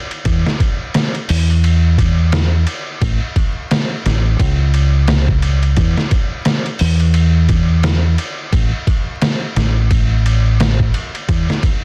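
A round, dark, up-front dub bass, fingered on electric and moving between A1 and E2, anchors this dark, brooding trip hop fragment at 87 BPM with a 16th-note swing, while a muffled, pitched-down sampler-style kit with a thumpy kick, medium-tuned snare, hi-hat and ride pushes through overdrive and compression, all under digital ambience, vinyl crackle and a dense, heavily limited modern master tuned to A4 = 437 Hz.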